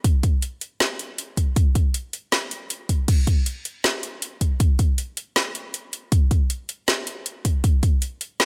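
A punchy, layered electronic kick drum sits up front with a tape-warm weight, playing from the start until 7.9 seconds in this short cut from a longer future bass piece at 158 BPM in a half-time feel with a light swing on the sixteenths. Beside it, a produced trap kit supplies a woody snare, metallic hi-hats and a crash cymbal, running to 8.5 seconds. The mood is bittersweet and dreamy, and the dry sound keeps both parts close and direct.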